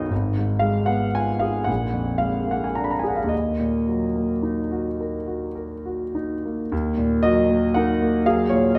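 A warm, intimate concert grand piano plays alone in this mournful, wistful romantic nocturne fragment in Eb minor, tuned to A4 = 437 Hz, moving in a rubato 6/8 at about 33-40 BPM by the dotted quarter through Fdim/Ab, Bb7 and Ebm before a rootless Bmaj7/D# arrives at 6.7 seconds as the opening section begins again, its up-front, natural sound carrying deep bass, audible action noise and a wet recital-hall reverb.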